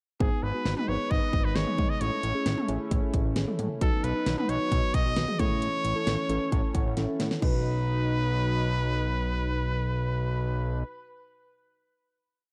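Synth-pop with a nostalgic, wistful mood, this short complete piece sets a bright, punchy trumpet up front, carrying a motif-based melody in sentence-like phrases with vibrato. Beneath it, a fat, saturated analog bass built from detuned sawtooth and square waves drives a sequenced line, while a drum-machine-style pop kit pairs a punchy kick and fat snare with metallic hats and syncopated toms. Muted, felt-like synth keys with a soft noise layer and chorus play syncopated, closely voiced chords in the background, and a smooth, detuned analog pad with chorus holds sustained chords behind them. The harmony moves from G#m through A and B and back to A before landing on a held B chord at 7.4 seconds, with a keys fill from 6.1 seconds and a brief drum fill leading into that final chord as the drums stop. A lush hall reverb and a dark, warm production give the whole piece a hazy, reflective glow.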